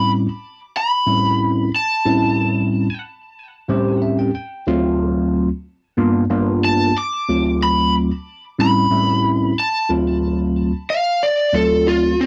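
A picked, overdriven lead guitar through a small cranked amp carries the melody up front from the first moment, over a bright, gritty tine electric piano with a phaser, pushed through a combo amp. This rollicking, swaggering blues excerpt moves at 92 BPM in a straight 4/4, tuned to A4 = 441 Hz, and cycles through sharp-nine chords from A7#9 to D7#9 and G7#9, with an electric piano fill at 3.4 seconds. The sound is a dry, close 1970s-style studio recording with light reverb.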